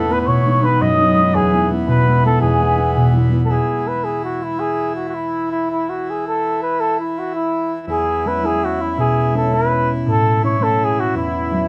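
A rollicking 6/8 jig at 110 beats per minute, played with a straight feel, this lively Celtic folk fragment in E major is tuned slightly low at A4 = 439 Hz and is cut from a longer piece. Up front, a warm, vintage flugelhorn carries the melody in a classical solo style with light vibrato, while a concert harp, also up front, supplies a mellow, ringing, thumb-plucked accompaniment from the low register. Beneath them an accordion holds a reedy, hollow drone, and a very quiet, airy baroque flute adds a distant, tongued, expressive second line on wooden tone until it stops at 3.2 s. The opening phrase gives way at 3.5 s to a new section that moves through E6, A and a closing Eadd9 chord. A small room with a short, wet reverb wraps the ensemble in a close, intimate space.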